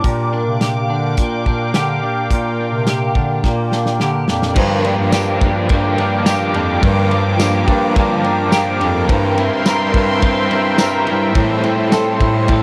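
This dry, gritty recording sits close with little reverb around it, a short cut from a longer dream pop piece that feels ethereal and haunting at 106 BPM in a straight 4/4. A swirling, detuned sawtooth pad holds sustained chords under phaser, chorus and a low-pass filter, while a clean, scooped electric guitar picks arpeggios through ensemble chorus, filtering and analog delay. A bright, close-miked bass clarinet carries the bass line in a classical style, and a loose indie drum kit with dark cymbals, a punchy kick and a rolled-off top sits up front, using crash, ride, hi-hat, snare and tambourine. A drum fill from 3.4 to 4.6 seconds leads into a new section where a crunchy, double-tracked overdriven guitar enters with tremolo and ensemble chorus. A very quiet, crystalline FM bell joins at the same moment and drops out at 11.6 seconds, as the harmony moves from Bb6 to C7/G and then Am7.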